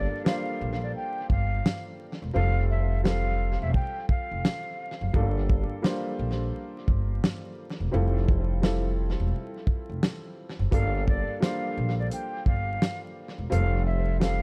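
This boom-bap hip-hop passage, cut from a longer piece, moves at 86 BPM in G dorian with a tough, moody swing on the 16ths. A warm, woody upright piano with a vintage character carries the accompaniment throughout, moving between Gm7, F and Fmaj7, colored by cassette tape, filtering and tape echo. Sitting up front are a pizzicato upright bass with a woody, warm, steel-string tone and a soul drum kit that is dry and dark, with a fat snare, tight kick, hi-hat and a rolled-off top, touched with tape echo. A breathy, mellow silver concert flute with vibrato, a crisp attack and an unsteady quality carries the melody from the start until 5.1 seconds and returns at 10.7 seconds, filtered and colored with tape echo. The whole mix sits in an echo-heavy studio ambience laced with vinyl crackle.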